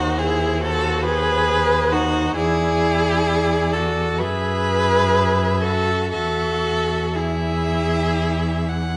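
Heard in a moderate recital hall reverb, this lyrical excerpt from a slow romantic classical movement for string quartet unfolds in rubato 4/4 at 53-70 BPM. A softer, focused violin sings the melody with vibrato above a second violin that sits up front with rich tone, expressive vibrato and portamento, while a clear, distant viola accompanies and a bowed cello carries the bass with vibrato, over chords of B6b9/D#, E7, F#m11 and E.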